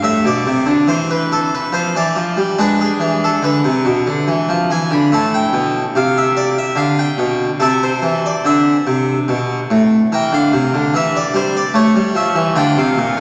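A baroque-style classical suite movement for solo harpsichord in A minor, this introspective, flowing passage moves at 72 BPM in 3/4 with a rubato feel, tuned to A4 = 438 Hz and cut from a longer piece. The French-style harpsichord sits up front with a full, plucked tone from its two sets of strings, ranging from A2 to B5 across harmonies that pass through E7, G7, Edim and A7 before landing on Bb at 12.6 seconds. A wet cathedral reverb with a long 4.9-second decay surrounds it, and a layer of vinyl crackle adds an aged patina.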